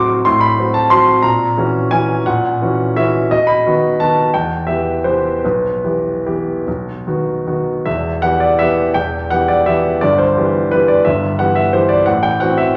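A lilting waltz in 3/4 moves with a rubato feel, its tempo drifting between 141 and 185 BPM across this short cut from a longer classical piece in E minor. The mood is nostalgic and elegant, carried by a solo grand piano with a smooth, vintage tone that sits up front and spans from E1 to D6. Its opening passage moves through diminished and dominant colours, touches E minor and then turns back to B, and a new section begins at 7.9 seconds, returning to E minor and closing on an F#m7b5 chord over A at 12.1 seconds. A wet recital hall reverb with a 1.6-second decay surrounds the piano, lending the performance a sense of a spacious concert room.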